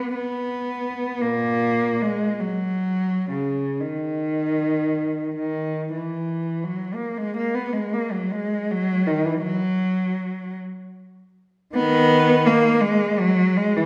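In a free, rubato 6/8, a lone bowed cello plays a lyrical, nostalgic classical phrase twice over 13.9 seconds, its rich, expressive tone shaped by vibrato, soft attacks and portamento, set up front against the wet reverb of a recital hall heard from further back in the room.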